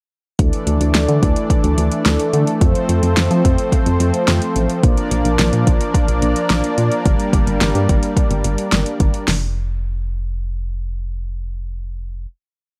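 A dry, gritty digital ambience frames this short, upbeat yet wistful synth-pop piece, where a brassy, detuned sawtooth pad with chorus holds sustained chords from Dsus2 through F, Bb and Gm over a punchy, round FM bass and a deep house drum kit with a deep kick, fat snare and metallic hats, until the pad stops at 9.3 seconds and the drums at 9.4 seconds, and the bass alone carries the final note to 12.3 seconds.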